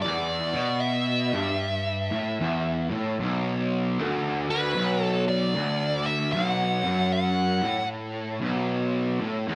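A dark, compressed fuzz lead guitar carries the melody through wah and distortion, sitting up front until 7.9 s, while a double-tracked, warm distorted rhythm guitar grinds out a low riff that runs on alone to 9.6 s. This hypnotic, sludgy metal fragment moves at a slow 76 BPM in 4/4 with a swung feel, in B minor, shifting from E5 to Bm at 3.2 s. The band plays live together in a stone room whose moderate reverb gives the picked guitars a heavy, enclosed presence.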